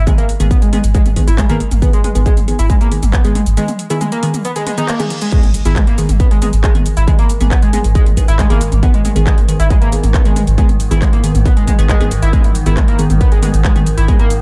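Driving peak-time techno at 137 BPM in G# minor, relentless and straight in 4/4, built on a distorted, up-front kick and a thick, saturated sub bass on G#1, with a techno kit of metallic hats, handclaps, shaker, toms and crash pumping under sidechain. A screaming, guitar-like overdriven lead riffs between G#3 and E4 through chorus and analog delay, while crisp, warbling wavetable chord stabs with 12-bit grit and a moving notch decay around it in an echo-heavy mix. After a break from 3.6 s, a very quiet reverse cymbal and impact usher in the drop at 5.3 s, and from 6.9 s a swarming, tense granular drone evolves in the background of this excerpt.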